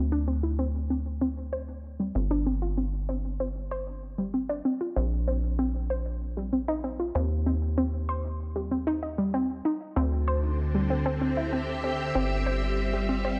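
Glitchy and intricate, this short IDM excerpt moves at 96 BPM in a straight 4/4, built on a rubbery, saturated acid bass with a dark, resonant filter pluck and a warbling, lo-fi sawtooth pluck that spins arpeggios through chorus and tape echo. Suspended harmonies drift from a D7 that omits the third through Gsus4, Bbsus2 and Eb5 toward G7sus4, and at 10.4 s a silky vintage string machine joins with slow-attack sustained chords thickened by ensemble chorus. Light reverb and digital ambience give the close, up-front parts a faint sense of space.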